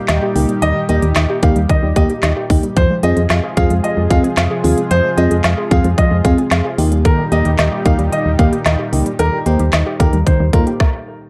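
Synth-pop at 112 BPM with a melancholic, nocturnal mood, this short cut from a longer piece moves from Eb to Fm and back over a dark production with light reverb. A tight, overdriven electronic kit with a woody snare, crisp hats and handclaps sits up front beside a punchy, round FM bass, while a soft FM electric piano with chorus and phaser accompanies and a natural-sounding baby grand piano adds a second line over a smooth, slow-attack analog pad. A warbling, lo-fi pluck plays arpeggios through chorus and delay in the background before everything drops out at 10.8 seconds.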